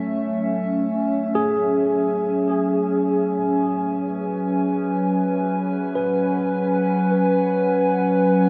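Reflective and melancholic, this ambient fragment in free time, cut from a longer piece, rests on a single F#m9 chord for its 8.5 seconds. A warbly, detuned tape-like pad sits up front with slow-attack sustained chords, its nostalgic lo-fi haze colored by chorus, ring modulation and shimmer reverb. Behind it, a bright, barky tine electric piano played through a combo amp traces quiet arpeggios, touched by subtle chorus and a diffuse ambient delay, all bathed in a huge, wet reverb with a long 8.1-second tail.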